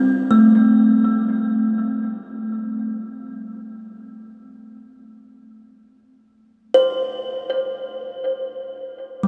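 Ambient music in free time, this short passage cut from a longer piece has a luminous, warm mood. A solo kalimba carries it from start to finish across 9.3 seconds, its woody, thumb-plucked notes short, airy and placed up front, ranging from G3 to C5. An analog delay trails each pluck of the solid-board instrument. The harmony rests on a rootless Gsus4, leaving the sound suspended and open. A huge, wet reverb with a 7.9-second decay soaks the dreamy mix, and a cassette tape quality lends it a soft, hazy patina.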